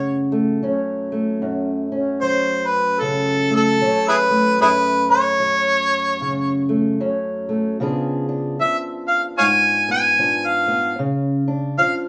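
A warm harmonica carries the melody up front with light vibrato and tongue slaps, its jazz-inflected solo lines set in plate reverb that lends a distant, roomy cast. Beneath it, a fingerpicked old ladder-braced acoustic guitar gives dark, woody, boxy accompaniment on old strings, moving from F#m to C#7b9 at 7.8 seconds. This mournful, soulful piece of acoustic country blues, cut from a longer performance, sways at 75 BPM with a swung feel in F# harmonic minor, captured in a small booth-like room.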